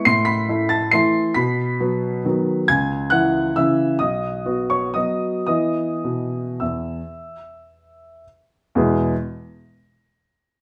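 Graceful and sparkling, this classical piano waltz in E major moves in a rubato 3/4 between 105 and 148 BPM, its harmony passing through Am, B and C#m before settling on E. A warm, open baby grand plays solo from B1 up to C7, sitting up front in a moderate, large studio reverb. The tempo slows from 4.7 to 8.8 seconds, where a new section begins just before this fragment of a longer piece cuts off.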